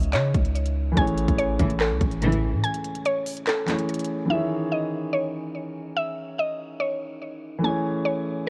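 Worn, warbling cassette-tape drift colors this melancholic, hard-hitting trap hip hop excerpt at 144 BPM in a half-time feel in C# minor, where a dark, vintage baby grand piano and a woody, round FM mallet-like pluck with chorus and delay carry the C#madd9 and Amaj7 chords throughout, while a deep, boomy 808 bass and a trap kit with hard-clipped kick, crisp hi-hats and handclaps hit hard until the bass drops out at 2.6 seconds and the drums at 4.1 seconds, and lush, bowed studio strings add brief stabs from 1.6 seconds.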